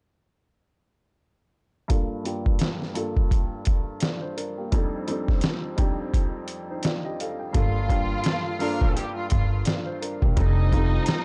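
Boom-bap hip-hop at 85 BPM in G minor, reflective and gritty, with a dark, dry production and a swung 16th-note feel. From 1.9 seconds an intimate, slightly detuned upright piano with audible action noise plays Gm9 and F13 chords under a filter sweep, over a compressed, pitched-down, sampler-style trip hop kit that sits up front with a thumpy kick, medium-tuned snare and hi-hat. At 7.5 seconds a lush, bowed violin section takes the melody with smooth vibrato and a woody pizzicato upright bass joins the low end, while a distant, roomy horn section adds a brief tape-echoed stab in the background at 8.6 seconds.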